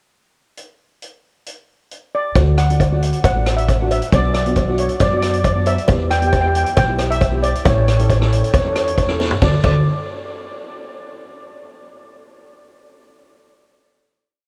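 Calypso with a bouncy, carefree mood, heard as a complete short piece that opens with a street-band drum kit playing a pickup bar from 0.6 seconds, crash cymbal, hi-hat, rim click, snare, toms and a boomy kick all sounding up front with dark cymbals and a rolled-off top in a calypso groove. A lead steel pan joins at 2.1 seconds with a shimmering, airy melody built from short song-like motifs, struck with medium rubber sticks. From 2.4 seconds the verse brings in a fingerpicked nylon-string guitar playing dark, syncopated triad chords through a lush chorus, a growly, woody upright bass thumping out a two-feel root-and-fifth line up front, and a close cowbell pattern tucked in the background. The harmony moves from D through Bm and Em to A before a drum fill at 9.2 seconds leads into a final D chord at 9.4 seconds. The whole mix is dreamy and soaked in a huge ambient reverb with a cassette-tape character.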